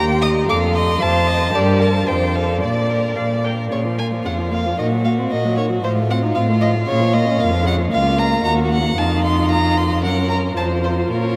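A rich, focused first violin carries the melody up front with vibrato and a smooth top, in a cheerful, lively classical-period string quartet movement at 114 BPM in 2/4, cut from a longer piece. Around it, a clear, more distant second violin plays its own line, a dark, woody viola fills in the accompaniment, and a close, intimate cello holds the bass sul tasto with a soft attack, airy bow and light vibrato. The Bb major opening turns to Bb minor at 3.7 s, and the whole quartet sits in a vast, echoing space with a huge, wet reverb.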